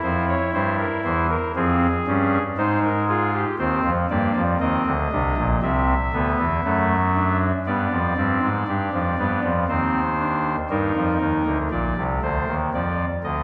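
Heard from further back in a reverberant scoring stage with a two-second tail, this short cut from a longer piece is a solemn, serious baroque-style three-part fugue in 4/4 at 59 BPM with a straight feel. A solo pipe organ voiced on a soft reed oboe stop, with baroque voicing and set up front, spans Bb1 to E5. The harmony moves from C through Fm, Cm/Eb, D7/C and G, with a new section arriving on Bb at 11.7 seconds before the cut at 13.4 seconds.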